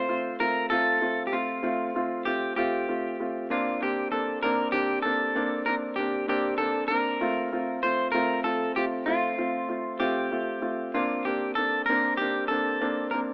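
Tender and swaying, this short pop excerpt moves at 64 dotted-quarter beats per minute in a straight 6/8, settled in Bb major. An electric guitar at the edge of break-up carries the melody from F4 to C5, its tone twangy, fingered and slightly broken-up, sitting up front in the mix. Beneath it a clear concert grand piano supplies the accompaniment between A3 and F4, natural in character with a deep bass, also placed close to the listener. The harmony rocks gently between F and Bbadd9, changing at 3.5, 7.2 and 10.9 seconds. A moderate, lush hall reverb surrounds the pair, while the rough home-demo mix gives the whole a small-speaker sound.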